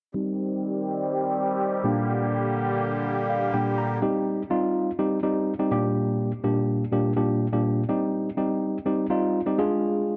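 A mellow tine electric piano, worn and slightly out of tune, sits up front through its built-in speakers in this energetic, driving pop excerpt cut from a longer piece. Beside it, a reedy musette accordion with shimmering, airy tuning holds sustained chords from 0.1 s until it stops at 4.0 s. Both parts pass through a low-pass filter, and a filter sweep runs across the opening stretch, with the electric piano playing a fill from 3.1 s that leads into the second section. From there the piano carries the accompaniment alone, cycling through Cm and Gm/Bb before landing on Ddim near the close. A moderate plate reverb and the soft grain of cassette tape give the whole recording a hazy, lived-in sheen.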